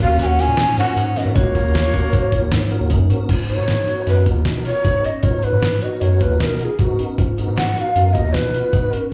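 This cut from a longer piece sounds like a live club gig heard through the venue's PA, with light digital ambience around a driving, brooding progressive instrumental in 5/4 at 154 BPM, set in G# dorian with a straight feel. Up front, a breathy, hollow shakuhachi carries the melody with bamboo chiff, vibrato and rolled-off highs, moving into a solo from 3.3 seconds as the harmony shifts from F# to G#m7. A clear, close-miked alto saxophone plays a classical-style second line in the background until 2.9 seconds, while a dark tonewheel organ with key click, chorus vibrato and a fast rotary speaker fills in the accompaniment behind it. A metallic, ringing vibraphone struck with medium mallets spins arpeggios with fast motor vibrato, and the shakuhachi, saxophone, organ and vibraphone all carry a slapback echo. Underneath, a deep, round analog bass with a fast attack and sustained notes sits up front beside a gritty, pitched-down boom bap drum kit, compressed and overdriven, with a thumpy kick, a medium-tuned snare, hi-hat and crash re-recorded in a small room.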